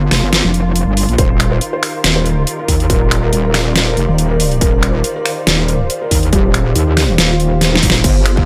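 The mix is dry and loud, with a pair of overdriven wobble basses pushed up front in this heavy, aggressive slice of half-time wobble dubstep, cut from a longer piece and landing straight in the drop. One bass is a detuned, saturated square-and-sine unison with chorus, while the second is a metallic FM tone whose range reaches up to Eb2 and still carries a mellow edge beneath its bite. An overdriven dubstep kit of deep snare, bright hats, ride, crash and finger snaps rides a swung feel, joined at 1.2 seconds by a distorted, tape-tinged electronic kick, and a drum fill closes the passage at 7.6 seconds. In the background, a lush bowed string section holds sustained chords under sidechain pumping and a low-pass filter, moving from Gm to Ebadd9. A soft, boxy felt-muted upright piano, with audible action noise, gritty 12-bit sampler character and delay, enters alongside that chord change. From 3.1 seconds, a blurred granular pad with slow attack and its own reverb drifts in high above, also pumping against the beat.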